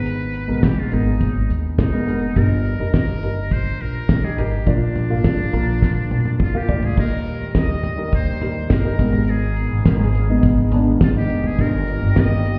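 Piano-driven pop in Eb major at 104 BPM, this anthemic, warm excerpt from a longer piece moves in a straight 4/4. A dark, mellow upright piano carries the accompaniment up front alongside a woody pizzicato upright bass with steel strings, while a damped 70s drum kit sits dry and forward with a fat snare and tight kick, playing a drum fill from 5.8 to 7.0 seconds. Over them a trumpet with a metal mute takes the solo melody in a pop style, its tone brilliant yet thin and buzzy, with light vibrato, scooped notes and a smooth top. At 7.0 seconds the second section arrives and a detuned analog pad of sawtooth and triangle waves enters in the background, sustaining chords with a slow attack through chorus and phaser. The harmony moves from Abmadd9 through Eb and Bb, back to Eb, then returns to Abmadd9 before settling on Eb/G. The whole mix sounds muffled, as if heard through a wall, with a small room ambience and stone room reverb.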